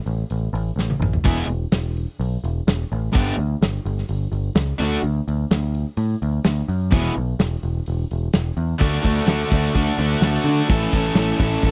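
This dry, close recording has the feel of a 1970s studio, with little reverb. The confident, driving classic rock moves at 127 BPM in a straight 4/4. A big acoustic rock drum kit sits up front with a mid-forward, rolled-off top, a tight kick and a medium-tuned snare, and it plays crash cymbal, hi-hat and toms from the start alongside a dark, round overdriven bass that is picked and heard direct. After a drum fill between 0.8 and 1.3 seconds, two picked electric guitars enter together on the riff: a crunchy, up-front guitar and a bright, cranked stack guitar with overdrive. The chords move from A5 through E, G, D and E, then a new section at 8.8 seconds shifts to D and lands on A as this cut from a longer piece closes at 11.7 seconds.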